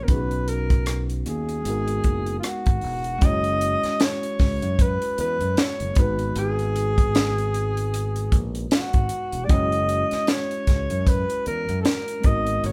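This excerpt rides a slow 76 BPM groove in 4/4 with a lazy 16th-note swing, giving a lush 1970s-style soul feel that is cinematic and smooth. A tight funk drum kit sits up front, with a dry, high-tuned snare, a tight kick, hi-hat and rim click, entering at 0.1 seconds. A fingered electric bass adds a bright, growly, directly amped low end, while a mellow tine electric piano supplies clean accompaniment through its built-in speakers. Over them, a breathy alto saxophone carries the melody in an intimate, close-miked jazz style, with subtone, soft attacks, scooped notes and vibrato that make it sound almost whispered. The harmony moves from B to G#m9, then shifts at 3.2 seconds into a second section that alternates F#5 and G#m7, all captured as a band playing live in one room with light reverb.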